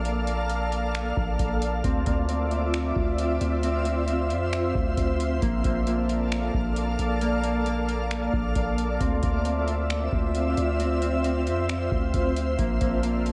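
A half-time groove in 4/4 underpins this short excerpt of atmospheric cloud-rap, with a booming analog drum machine entering at 0.1 s to set deep kicks, metallic hi-hats and finger snaps in a spacious, ethereal haze. From the very start, a shimmering ambient pad holds sustained chords up front, its detuned, granular sine tone lifted by an octave-up sheen, chorus and built-in reverb, and it pumps against the sidechain. Beneath it, a long 808-style bass sits forward in the mix, its sine body striking quickly and then decaying in a mellow, deep tail. At 1.8 s a Celtic harp joins in the background with fingerpicked arpeggios, its acoustic, ringing strings softened by a low-pass filter and trailed by tape echo. The harmony drifts between Bbmaj7 and Dm9, and the whole dreamy mix sits soaked in a moderate plate reverb that gives it a floating, airy quality.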